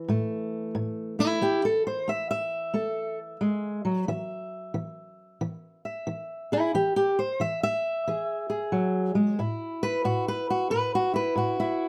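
A swung 4/4 groove at 90 BPM gives this short excerpt of acoustic country blues a swaggering, soulful strut. A fingerpicked steel-string acoustic guitar plays alone throughout, its dark, auditorium-sized tone sitting up front and ranging from A2 to E5 as it moves from A5 to E at 4.1 seconds and back to A5 at 9.4 seconds. A moderate studio reverb gives the guitar a touch of room around it.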